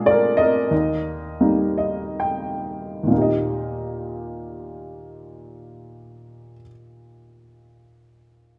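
Hopeful and warm, this short cut from a longer classical piece is a lyrical solo for upright piano in Eb major, set in 3/4 with a free, rubato feel that ranges from 61 to 101 BPM. The piano sounds clear and woody, slightly detuned and natural, with a short sustain, spanning a range from Eb2 up to G5, and it sits up front in a moderate recital hall reverb. It opens on a Bb7 chord that settles onto Eb at 0.7 seconds while the tempo slows through the first section. From 1.4 to 3.1 seconds the piano adds a brief fill. A new section begins at 3.1 seconds and carries the piece through to its end at 8.6 seconds.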